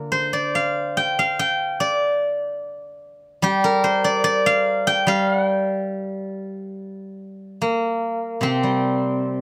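Chinese traditional music for solo plucked strings, this brief excerpt has a contemplative, longing mood, moving freely in rubato around 73 BPM in 2/4 within the G yu mode. A lone steel-string zither, played with fingerpicks, carries the whole passage from 0.0 to 9.4 seconds, ranging from C3 up to G5. Its acoustic tone is ringing and silvery, with a warm body beneath. Close, detailed microphones place the zither up front, and light reverb adds a touch of space around each plucked note. Partway through, at 6.8 seconds, the music turns to a new section before the cut ends at 9.4 seconds, tuned slightly below standard pitch with A4 at 436 Hz.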